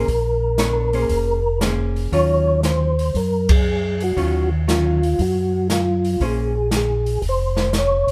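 Soul jazz organ trio in a soulful, smoky mood, swinging in 4/4, where a soft, flute-like percussive tonewheel organ carries the melody through a slow rotary speaker and chorus vibrato, a round, mellow organ bass holds the low end, a dark, clean hollow-body guitar accompanies until 6.5 seconds, and an airy acoustic kit with dark cymbals and a boomy kick sits up front, the band hitting a shared accent at 3.4 seconds over Bbm9 and Ebm9 chords in a lightly reverberant live room.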